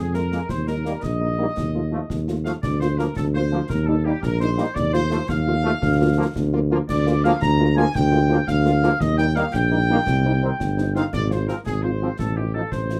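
In a straight 6/8 lilt, this spirited, proud military-style wind band march, cut from a longer piece, sets a dark, roomy trumpet section on the melody over a vintage-toned woodwind second line, background French horns, sustained trombone chords, an up-front tuba bass with light vibrato, and concert snare, bass drum and clash cymbals with dusky cymbal color, all under light reverb through close, detailed microphones.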